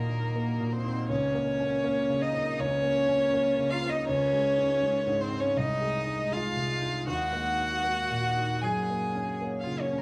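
Longing and reflective, this ten-second cut from a longer neoclassical piece for piano and strings moves at a rubato 80 BPM in 4/4 in Eb dorian, with a single bowed violin singing the melody up front with vibrato and a focused, smooth top, a rich, even cello carrying a close second line, an intimate grand piano accompanying naturally with audible action noise, and a very quiet evolving wavetable pad of morphing triangle unison holding sustained chords through chorus and phaser, all in a small room with light reverb, over chords moving from Ebm through Dbadd9 to Gbadd9.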